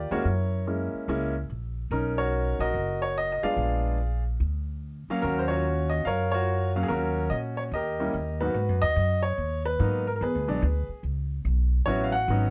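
A clear, natural grand piano carries the melody over a woody, pizzicato upright bass from the very start of this late-night, cool jazz piano trio excerpt, swinging at 145 BPM in 4/4 and set in Eb minor. Both instruments sit up front in a dark, warm production with light reverb, the harmony moving through rich extended chords such as Gb9, Bmaj9 and Ebm9. At 8.5 s the music shifts to G# minor, passing through a rootless E7 before settling on A69, a moment cut from a longer piece.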